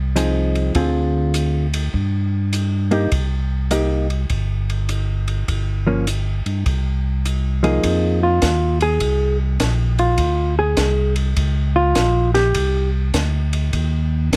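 This soul jazz organ trio excerpt has a bluesy, late-night mood, swinging at 102 BPM in 4/4 in C minor before moving to F dorian at 7.8 seconds. A fat, lightly overdriven tonewheel organ carries the bass line through a slow rotary speaker, sitting up front in the mix. A clean, fingered hollow-body electric guitar with a dark, compressed tone comps alongside it, also up front, then steps out for a solo from 7.8 seconds before falling silent at 12.9 seconds. Beneath them, a compact acoustic cocktail kit plays hi-hat, ride, snare and kick, with a high-tuned snare, a punchy kick and shadowy cymbals. The recording is dry and intimate, captured with close, detailed microphones and little reverb, as chords such as Fm7, Dm7b5 and Cm7 move under the trio.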